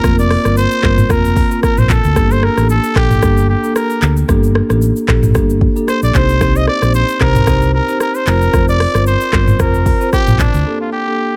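A lightly swung sixteenth-note afrobeats groove in 4/4 drives this smooth, sultry excerpt. It rests on an overdriven electronic drum kit of deep kick, metallic hi-hats, handclaps, rim clicks, shaker and toms, under a dark, round, punchy hollow-body electric bass, while a medium-mallet marimba supplies warm accompaniment over Fsus4, Gmadd9 and Cm, and an up-front growling trumpet with raspy grit, light vibrato and tape echo carries the melody.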